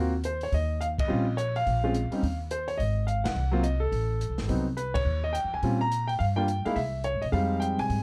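An up-front concert grand piano with deep bass carries the melody in this playful, swinging jazz trio excerpt, backed by woody, thumpy pizzicato upright bass on gut strings and a dark, smooth drum kit of hi-hat, boomy kick, ride and snare, with the band hitting accents together at 0.9, 3.2 and 4.9 seconds in a dry, warm mix.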